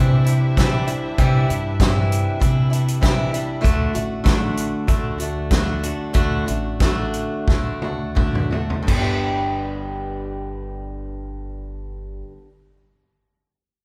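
A punchy, up-front country drum kit drives this hopeful, open-road snippet of folk and heartland rock in G major, with a straight 4/4 feel at 83-98 BPM that slows between 3.6 and 8.9 seconds, capped by a drum fill from 7.5 seconds. A bright, boxy picked acoustic guitar with a swing lilt sits forward beside a woody pizzicato upright bass, while a dark, smooth chamber string section holds bowed, vibrato-tinged chords in the background only through the opening 3.6 seconds. The chords move from Cadd9 to D before landing on G, and the band plays live together in one room with a moderate large-studio reverb.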